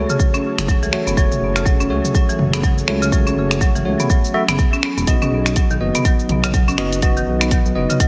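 Set in a light digital ambience, this hypnotic, warm afro house excerpt pairs a punchy, up-front electronic kick with a house kit of finger snaps, bright hi-hats, shaker and toms, while a smooth, saturated synth bass glides beneath buzzing, woody hard-mallet marimba arpeggios and bell-like, clean electric piano stabs with 12-bit grit and delay, all pumping together with an ethereal, chorused pad that sits in the background as the chords move from F#m to B at 5.1 seconds.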